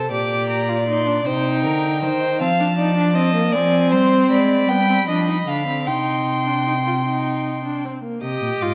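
Moving in a straight 6/8 at 52 BPM in dotted quarters, this driving, serious baroque-style fugue for string quartet, cut from a longer piece, settles into C minor from 3.5 s and lands on a Cm chord at 5.9 s. The first violin carries the high melody with smooth, even vibrato and a rich tone, yet sits quieter than the close, up-front second violin on the line beneath it. The viola adds expressive portamento with a soft attack, the intimate cello grounds the bass with an airy sul tasto bow, and the dark production and wet scoring-stage reverb of 1.5 s surround the quartet.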